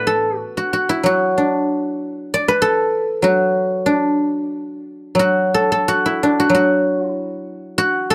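Rubato phrasing in 2/4 gives this short passage of traditional Chinese solo plucked-string music a flowing, elegant feel. A lone guzheng, played with fingerpicks, rings out silvery and up front across its span, shifting into a new section at 5.2 seconds before the passage is cut off at 8.1 seconds. The close, dry recording carries a touch of small-room ambience with a 1970s studio character.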